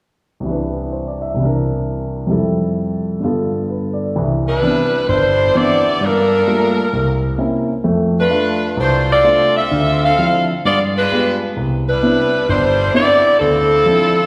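A swinging 4/4 at 130 BPM drives this energetic, joyful jazz excerpt in C major, cut from a longer piece. A dark concert grand piano opens alone at 0.4 seconds with accompaniment, its mellow tone and deep bass sitting up front and natural, moving through chords such as Cmaj7, C7, Fmaj7 and G7. At 4.5 seconds an edgy saxophone section takes the melody, a present, up-front ensemble sound with vibrato and a jazz-style phrasing. Beneath the horns the harmony grows richer, passing through Cmaj9, Gm9, C7b9, F6, Dm9 and G7b9 before settling back toward Cmaj9 and Dm9. A wet scoring stage reverb places the whole performance further back in the room, lending a spacious glow to the energetic arrangement.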